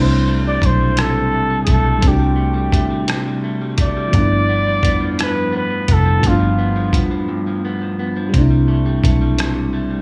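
A clear, vintage-toned flugelhorn carries the melody in a jazz style with vibrato and a touch of tape echo, singing from the start until it drops out at 7.0 seconds. This slow, tender R&B passage in six-eight sits at 57 BPM in C major, moving from C6 to G13 and back. Beneath the horn, a glassy FM electric piano with a bell-like attack and decaying, mellow chords fills out the accompaniment through chorus. An electric guitar at the edge of break-up picks a second line, its slightly broken-up tone softened by subtle chorus. A dark, round, foam-muted fingered bass anchors the low end, and a dusty, compressed sampler-style kit of hi-hat, thumpy kick and rim click sits up front from 0.6 seconds, gritty and tape-warm as if re-recorded in a small room. A brief break arrives at 7.3 seconds, and the whole excerpt is set in a digital studio ambience.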